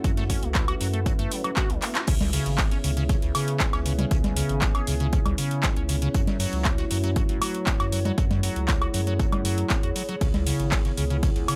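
A squelchy, resonant square-wave acid bass riff, filter-swept through the first 2.1 seconds before the drop, drives this trippy, raw acid house cut at 118 BPM in C# minor, over a punchy, up-front electronic kick, a booming analog drum machine with metallic hats, congas, handclaps, ride, crash and woodblock, a very quiet brushed acoustic kit of hi-hat and snare, a deep, thick saturated sub bass, a moody, pumping analog pad on sustained F#m7 and C#m7 chords, a lo-fi, nostalgic warbling tape-like pad in the background, and a brief airy, dreamy lead note with tape echo at 4.8 seconds, all under light reverb.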